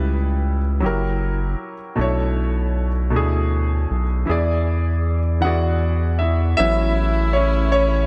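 Light reverb and a small room ambience frame this tender R&B fragment in 6/8, cut from a longer piece. A worn, natural-sounding concert grand piano sits up front, moving through chords from C#m7b5 to E7 over a round, dark analog bass with a fast attack and sustained notes. At 6.6 s the harmony settles on A6 as the piano takes a solo and a clear, punchy horn section adds loose stabs with vibrato.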